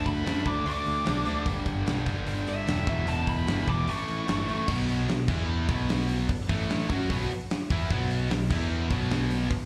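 This hard rock cut opens with a bluesy overdriven lead guitar taking a dark, distorted solo with slapback echo, riding over two picked rhythm guitars playing the riff, one crunchy and sitting in the background, the other bright with overdrive. A growly, punchy picked bass and a big acoustic drum kit, up front with a punchy kick, medium-tuned snare, hi-hat and crash cymbal, drive the straight 4/4 pulse at 149 BPM in B minor. The mood is driving and aggressive, with the harmony moving from D5 and G5 through Em and A in the solo passage. At 4.7 seconds the lead stops and a double-tracked, high-gain guitar joins the riff from the background as the chords turn to power-chord shifts between B5, E5 and A5. The sound is that of a live club gig heard through the venue's PA, with light reverb and a room feel, and this short cut from a longer piece ends at 9.7 seconds.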